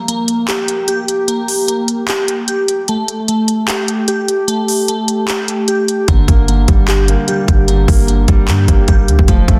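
Glassy digital keys open this menacing, eerie trap excerpt in G minor, spinning chorused, tape-echoed arpeggios with a filter sweep over a half-time 150 BPM groove, joined almost at once by an up-front electronic kit of handclaps, crisp hats and a hard-clipped kick. At 6.1 seconds a dark, mellow baby grand piano adds low, long-sustained accompaniment while a deep, boomy 808-style bass with a sine core and a noise layer takes the bottom end. Light reverb surrounds a dense, heavily limited modern master.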